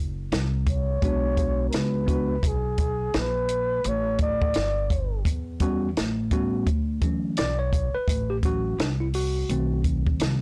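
Jazz-hop at 85 BPM in D major with a swung sixteenth feel, this relaxed, smooth excerpt pairs a woody pizzicato upright bass carrying transformer saturation with a dry cocktail drum kit, gritty from a vintage 12-bit sampler, with a high-tuned snare and tight kick, beneath a breathy, whispered flugelhorn with vibrato and scooped notes, set in slapback echo and plate reverb, from 0.7 to 5.2 seconds, while a worn, slightly out-of-tune tine electric piano accompanies and then takes a solo from 6.7 seconds, the whole mix pushed into a blown-out, overdriven sound.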